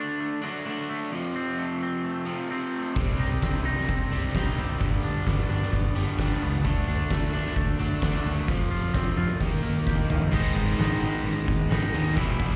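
Quiet-loud alternative rock at 130 BPM in C dorian, cathartic and angsty, heard as a live club gig through the venue's PA, where a twangy, scooped clean guitar's chorused arpeggios and a cranked, overdriven stack guitar riff open together, a warm fingered bass and an oversized, low-tuned drum kit with a fat snare, punchy kick, dark cymbals and gritty, pumping room sound join at 3.0 seconds, and after a drum fill a distorted guitar riff enters in the background at 10.3 seconds over a shift to A-flat minor.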